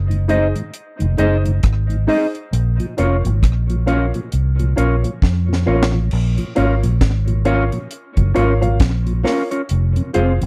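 A round, foam-muted electric bass opens this laid-back, meditative roots reggae excerpt, soon joined by a deep, dry drum kit with a high-tuned snare and tight kick, a mellow tonewheel organ with chorus vibrato and slow rotary speaker, a clean fingered electric guitar bathed in spring reverb and tape echo, and woody, slightly detuned upright piano stabs, heard up close in a 1970s-style studio sound, with a drum fill at 5.2 seconds leading into the second section.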